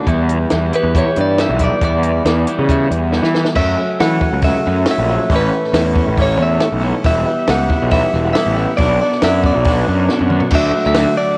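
This short cut from a longer indie rock track has the sound of a home recording on cassette, set in studio reverb. The mood is jangly and upbeat, with a straight pulse. Up front, a compact cocktail drum kit in a tight booth pairs dark cymbals and a high-tuned snare with a punchy kick, and marks a drum fill at 3.1 seconds. Beside it sits a fuzz-laden picked electric bass, played direct and amped through overdrive. Two overdriven electric guitars play riffs in the background, one of them biting and coloured by lush chorus and tape echo. A compressed, clean electric guitar carries the melody over chords that move from Em7 through add9 colours. At 7.1 seconds a very quiet, reedy tonewheel organ enters with sustained chords, its slow rotary speaker, chorus vibrato and key click adding a bright shimmer.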